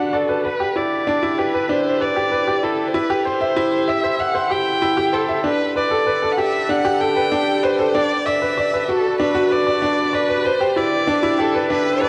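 A huge, wet ambient reverb with a 4.8-second tail surrounds this hypnotic, moving electronica passage, cut from a longer piece and running as a single build-up from 0.0 to 12.1 seconds. At 96 BPM in a straight 4/4 and in E minor, a brilliant, woody upright piano sits up front and plays a riff between D4 and E5, its natural tone echoed by a digital delay. Above it, a lone bowed violin carries the melody from A4 to G5, clear and smooth with an even vibrato, its sound softened by a low-pass filter and given a distant quality. The harmony moves from Em7 through C/E, Gadd9 and Bm before returning to Em7. Both parts play together throughout, the piano's sparkle set against the violin's filtered sheen.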